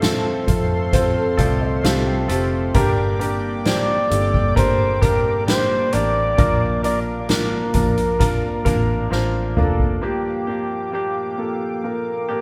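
A slow, straight 4/4 pulse at 66 BPM carries this emotional, hopeful pop ballad, cut from a longer piece, with soft-mallet drums and a boomy kick sitting up front and a dark, round, punchy muted electric bass until both stop at 10.0 s, just after a drum fill. Over them a breathy, whispered flugelhorn with light vibrato and delay sings the melody, while an intimate grand piano with audible action noise accompanies and adds an early fill. A shimmering chorused pulse-width pad holds chords and a twangy clean electric guitar picks arpeggios in the background, all as a band playing together in one room with light reverb, moving from F through Gm and Bb to a closing Gm7.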